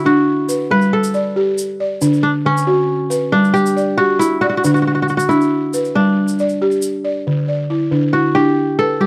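Kora and balafon open together in this short, hypnotic excerpt of West African string and xylophone music in a straight 12/8. The fingerpicked kora carries a bright, ringing melody up front, while the balafon's woody, buzzing arpeggios, struck with soft rubber mallets, add a dark, smooth layer up front alongside it. A grainy tube shaker joins at 0.5 seconds and stops at 6.9, all captured in a dry, close small-room sound with a 1970s studio character.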